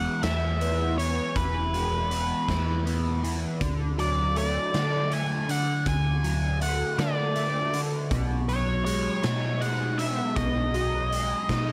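A slow 6/8 at 53 dotted-quarter beats per minute carries this hazy, hypnotic psychedelic rock fragment in E mixolydian, tuned slightly flat, moving from E to D at 3.6 seconds and to B6 at 8.1 seconds. Up front, a dark octave-fuzz lead guitar picks the melody through distortion and tape echo, while a double-tracked, overdriven semi-hollow guitar plays the riff through a flanger. Beneath them, a round, punchy short-scale hollow-body bass is fingered low, and a saturated, gritty garage drum kit of hi-hat, kick and snare enters at 0.2 seconds in a bright, pumping stone room, all in a dry, raw mix.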